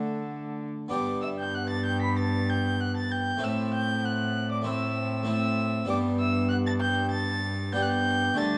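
A dark, warm studio recording with moderate large-room reverb carries this brief, festive and courtly Renaissance-style consort dance, in which a hollow, wooden baroque flute with vibrato sits distant in the background on the melody, an up-front, reedy gut-string violin plays a second line, a smooth-topped trombone and a full, French-style harpsichord on two sets of strings fill out the accompaniment, and a rich, bowed period cello holds the bass.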